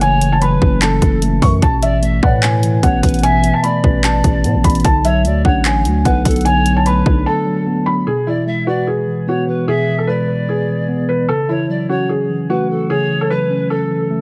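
A brooding, hard-hitting trap cut from a longer piece opens at 149 BPM in a half-time feel, with a felt-muted upright piano carrying the melody, soft and intimate with a thin, vintage felt tone under a low-pass filter. Beneath it a mellow tine electric piano plays clean, direct accompaniment, also filtered, while a polished pan flute sits distant in the mix as a second line, its pure, woody tone marked by vibrato, tongued notes and tape echo. Up front, a growling, buzzy 808-style bass hits with a fast attack and decays, and an overdriven trap kit punches through with a hard-clipped kick, bright hi-hats and handclaps. The harmony moves from F#m7 through Asus2 to Bm7, then the drums and bass drop out by 7.3 seconds for a short break, leaving the keys and flute to carry the second section over E and back to F#m7. Light digital reverb lends the whole a subtle sense of space.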